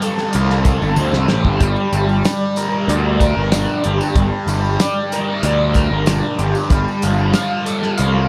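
A double-tracked fuzz guitar sits up front, its bright, distorted riff run through a phaser across a range from G3 to F5 in this dark, mysterious psychedelic rock excerpt cut from a longer piece. A growly, overdriven fuzz bass joins at 0.3 seconds, picked and direct, sitting just as far forward as the guitar. A damped 70s drum kit plays a straight 4/4 with a fat snare, tight kick, hi-hat and toms, and it drops in a fill between 1.0 and 1.6 seconds as the harmony moves from F to G minor. Beneath them a softly plucked tanpura hums a buzzing, shimmering drone in the background, while a jingly tambourine adds close, dry percussion. The mix carries a light studio reverb, and the harmony settles on F over G near the end.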